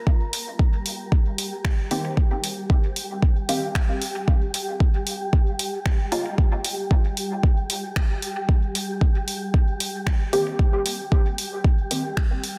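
A muted, nasal dub chord stab with a resonant filter sweep, phaser, dub echo and sidechain pumping drives this meditative, nocturnal dub techno fragment, entering at 1.9 seconds and returning at 10.3 seconds around a Cm7 harmony. Beneath it, a deep, up-front electronic kick and a deep house drum kit of finger snaps, hi-hat and a softly clipped snare with dub echo carry a swung 4/4 groove. An airy, breathy wind-like noise texture with its own reverb and sidechain pumping hovers throughout, all set in light reverb with a dense, heavily limited master.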